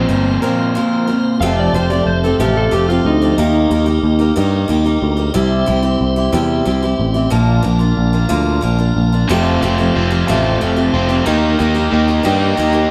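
A live, one-room band sound with light reverb opens this excerpt of open-road rock in 6/8 at 61 BPM in F major, moving through Bbsus2, Fadd9, Eb, C and Bb. A bright, full-bodied acoustic guitar jangles up front beside a direct, amped electric bass, while a piping, scooped tonewheel organ holds chords through a slow rotary speaker. A slightly broken-up slide guitar sings a second line until 5.0 seconds, and a compressed, double-tracked overdriven guitar riff returns at 9.3 seconds.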